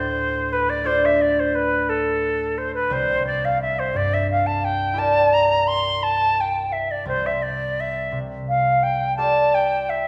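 A pure-toned silver flute and a fingerpicked concert harp open together on a Dm7 chord in this hazy, wistful impressionist duo, a fragment cut from a longer piece. The flute carries the melody between A4 and C6 with warm vibrato and tongued notes, sitting a touch louder than the harp. The harp's accompaniment spans a deep C2 up to D5, its acoustic strings ringing with a warm glow. The music moves in a rubato 12/8 at 58 dotted-quarter beats per minute in D minor, tuned to A4 = 438 Hz, with the harmony drifting to C9 at 2.9 seconds and settling on Dm11/C at 7.1 seconds. A wet scoring-stage reverb with a 1.7-second tail surrounds both instruments in a misty space.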